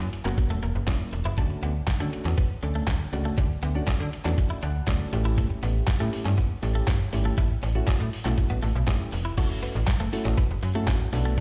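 Dance-pop with a confident, driving straight feel, built on a thumpy, muffled sampler-style drum kit with handclaps and crash, up front beside a snappy, metallic FM slap bass with sidechain pumping, while soft, round electric-piano-like synth keys with chorus and a filter sweep add a fill at 4.4 s, and a bright, clean twelve-string electric guitar riff sits in the background, all heard through a stone room reverb as if played on a big sound system in a bare room, in a short cut from a longer piece.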